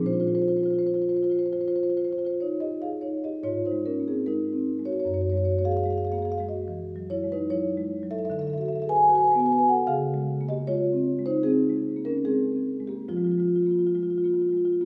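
A wet recital-hall reverb surrounds this solo marimba, heard from further back in the room with a small-room ambience, while the soft-malleted rosewood bars still sound up front, woody and round. This is a hypnotic, reflective contemporary classical piece in 4/4, moving freely with rubato at around 68-78 BPM and cut from a longer work. The marimba spans Gb2 to Ab5, drifting through rich, colourful harmonies from Bb9 and a chain of add9 chords to Dbmaj7 and finally Fmadd11 at 13.1 seconds.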